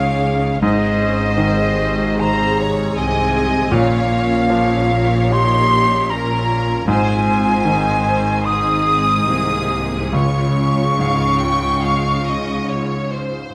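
A pure, vibrato-laden silver flute doubles a distant violin line high above a smooth violin melody in this tender, hopeful cinematic film-score excerpt in Ab major, moving rubato at 69-80 BPM over a brilliant grand piano with audible action noise, background violas and cellos, a focused double bass section and a very quiet, ringing harp playing arpeggios, all set in a moderate scoring-stage reverb.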